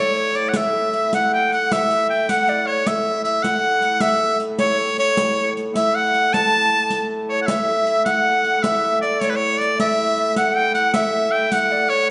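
A wet recital-hall reverb with about 1.5 seconds of decay surrounds this short medieval dance, and its top end is gently trimmed. The mood is rustic and festive, moving at 104 BPM in a straight 6/8 in A mixolydian. It is cut from a longer piece and states one melodic idea twice. An edgy shawm sits up front with the melody, played folk-style with vibrato and a soft attack, while a tenor recorder adds an airy second line, tongued with audible chiff and expressive vibrato. Beneath them, a dark hurdy-gurdy holds a low drone on A, its bowed, keyed tone woody and distant. A riq enters at 0.3 seconds and stops at 11.7 seconds, its shadowy jingles played by hand and kept close and dry.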